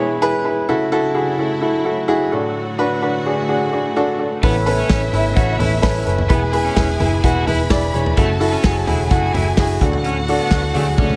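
This uplifting, anthemic piano-driven pop excerpt opens with an open, up-front baby grand piano playing short-sustained accompaniment over lush, woody string chords that sit in the background. The tempo is 128 BPM in a straight 4/4 feel, tuned to A4 = 436 Hz, with the harmony moving through E, F#m7, D and Aadd9. At 4.4 seconds the band arrives: a loose indie kit with a tight kick and medium-tuned snare, a dark, round, foam-muted picked bass, and a crunchy overdriven guitar riff colored by phaser. An expressive violin section enters at the same moment with a second line full of vibrato and portamento. The piano stays most prominent, with drums and bass close behind, inside light reverb and a small room ambience. A drum fill at 11.0 seconds closes the passage, which is cut from a longer piece.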